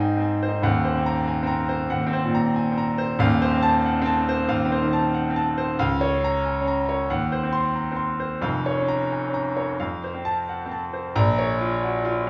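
A solo concert grand piano opens this passionate, stormy classical study, its playing free and rubato in 4/4 and ranging from deep bass notes up into the high treble. The piano sounds clear and polished, with the action noise audible, set in a large, wet studio reverb that places the listener further back in the room. Cut from a longer piece, the passage moves through darkened, restless harmonies before settling onto a Bb minor chord at 11.2 seconds as a brief new section begins, ending at 12.3 seconds.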